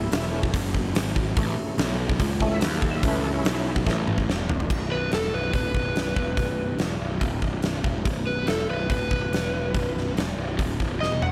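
A straight 4/4 pulse at 143 BPM drives this swaggering blues rock power trio cut with a southern rock edge, taken from a longer piece and sitting on an A chord before the harmony drops out at 4.7 seconds. A huge arena drum kit sits up front with a punchy kick, a medium-tuned snare, bright cymbals, toms and a pumping hall sound, and it rolls through fills from 3.9 to 4.7 seconds and again at the very end. The opening belongs to an overdriven tonewheel organ, thick and gritty with key click, percussive second harmonic attack, chorus vibrato and a slow rotary speaker, holding sustained chords as a solo feature until it stops at 4.1 seconds. Underneath, a picked electric bass growls with fuzz, bright and direct from the amp, running low and up front throughout. At 4.9 seconds an overdriven slide guitar takes the melody, fingered and warm in tone, riding high over the band. The mix carries light reverb and a small room ambience.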